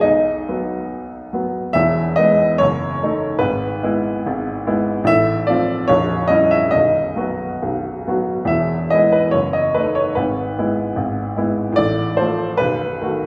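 A bright, brilliant baby grand piano carries this lyrical romantic character piece alone, its natural, short-sustained tone sitting up front even as the listener seems placed further back in a recital hall with a lush reverb. In E major and 2/4, the tempo drifts between 63 and 75 BPM with a free rubato feel. After a brief opening on B, a longer passage from 1.8 seconds moves through diminished and inverted chords before settling on B7 near 12.6 seconds, a short span cut from a longer work.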